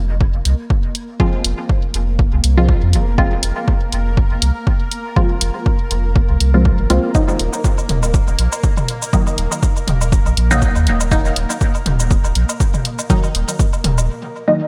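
A deep, round sine sub bass sits up front from the opening, its sustained notes pumping against a punchy, tape-flavoured kick in this meditative, cavernous stretch of dub techno cut from a longer piece. Muted, detuned sawtooth chord stabs with a filter pluck and short decay arrive at 1.2 seconds, coloured by phaser and trailing dub echo as the harmony moves from F minor to E-flat minor. Behind them, a bubbling, resonant texture of random filter steps swells in slowly and hangs back in the mix, shimmering with chorus and its own reverb. Analog, tape-warm hi-hat and shaker sit within the lightly swung sixteenth-note groove, and at 7.3 seconds layered electronic woodblock and toms join, carrying gated reverb and dub echo. The production is bright in a 1980s digital manner with light reverb, and a brief break closes the section at 14.1 seconds.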